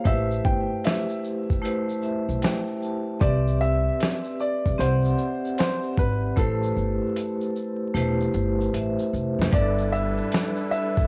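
Lo-fi hip hop in A dorian at 76 BPM, swung on the sixteenths, this melancholic, hazy excerpt is cut from a longer piece and drifts through Am7, Cmaj7 and back to Am7 before settling on G69. A woody upright piano carries the melody through cassette tape, while a vibraphone struck with hard mallets sits up front with a dark, metallic ring and slow motor vibrato, adding fills at 1.6 and 8.3 seconds. Beneath them, a pizzicato upright bass with steel strings gives a thumpy, acoustic low end, and a gritty, compressed sampler-style soul kit of kick, snare, hi-hat and shaker, re-recorded in a small room, brings a fat snare and a drum fill from 6.4 seconds. At 9.5 seconds a reedy musette accordion enters softly with shimmering, wet-tuned sustained chords, joined by a very quiet, grainy tube shaker. Light reverb, small room ambience and vinyl crackle give the whole home-recorded cassette sound a dusty, intimate haze.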